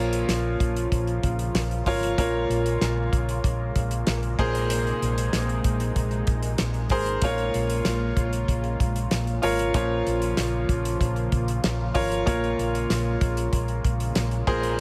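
Piano-driven pop at 95 BPM in 4/4 with a bittersweet, driving mood, this dry excerpt cut from a longer piece features a clear, open concert grand piano up front playing accompaniment over Bbm, Db6/Bb and Abadd9/Bb chords, a lush, detuned sawtooth unison pad with chorus and phaser sustaining chords in the background, a round, hollow-body fingered electric bass, and a damped 70s drum kit with a fat snare, tight kick and dark cymbals entering at 0.1 seconds.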